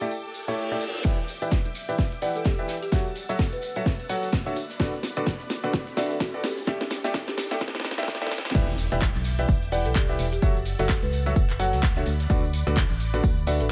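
A clear, woody upright piano riff leads this bittersweet, soulful piano house excerpt in E dorian at 128 BPM with a swung feel, filtered, delayed and pumping, while a mellow soft-mallet folk marimba melody and shimmering string machine violins sit in the background, a faint tambourine ticks along from the start, a very quiet reverse cymbal, riser and impact mark the build-up and the drop at 8.5 seconds, and from 1.0 seconds a hollow, organ-like FM bass, a punchy electronic kick, a house drum kit with cracking snare, handclaps, hi-hat, shaker and crash, and a very quiet modern studio drum kit carry the groove.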